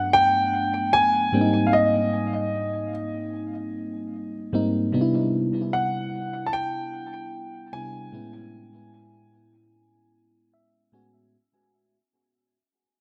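This is a smooth, tender R&B piece at 75 BPM in 4/4, with a light swing on the sixteenths and tuning set to A4 = 441 Hz. A clear grand piano carries the melody high in its range, sitting up front with an intimate, polished tone, long sustain and audible action noise, its notes trailed by tape echo. Beneath it, a mellow FM electric piano supplies the accompaniment across a broad register, sounding round and dark with a soft noise layer, chorus and tape echo on its decaying tones. The harmony drifts through lush major-ninth chords, moving from Gmaj9 to Abmaj9, Cmaj9 and Amaj9. Moderate spring reverb gives an echo-heavy atmosphere, and the whole passage is a fade-out cut from a longer piece. The electric piano plays a closing fill from 10.1 to 11.3 seconds, and the grand piano drops away partway through it, at 10.5 seconds.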